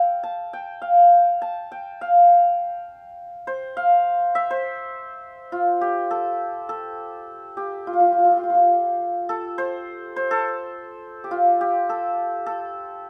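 Indian classical in a devotional, meditative mood, this 5/4 excerpt features a solo acoustic santur, hammered and up front with a shimmering, ringing tone in a moderate studio reverb, gradually speeding up as it moves into a new section at 2.0 seconds.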